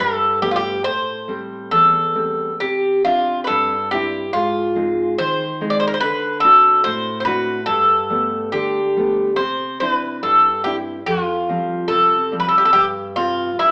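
The rhythm moves in a loose, rubato two-beat metre, giving this fado-style ballad an unhurried, breathing feel that suits its tender, nostalgic mood. An Irish bouzouki carries the melody up front, its picked double strings ringing with a warm, metallic edge across a modest middle range. Beneath it, a nylon-string guitar fingerpicks a full-bodied classical accompaniment from deep bass notes up into its upper register, sitting well behind the lead. The harmony drifts through colored chords such as Gadd9, Am7 and Cadd9, with an unexpected turn to Ab before D7 pulls it back toward home and a closing C5/G. Both instruments play together from 0.0 s to 13.7 s, captured live in one room with a moderate large-studio reverb and a nostalgic AM radio tone. This brief passage is cut from a longer piece.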